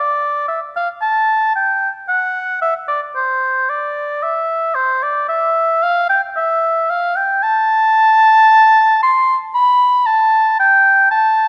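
A moderate scoring-stage reverb with a 1.9-second decay surrounds this recording, giving a lone oboe a gently spacious setting while keeping it up front. This is a classical, baroque-style fantasia for unaccompanied oboe in 3/4, played with a free, rubato feel that makes the line sound flowing and serene. The oboe has a warm tone with a smooth top and light vibrato, staying between C5 and C6 in a classical style. It plays alone for the whole fragment, from 0.0 to 11.5 seconds, in a passage taken from a longer piece.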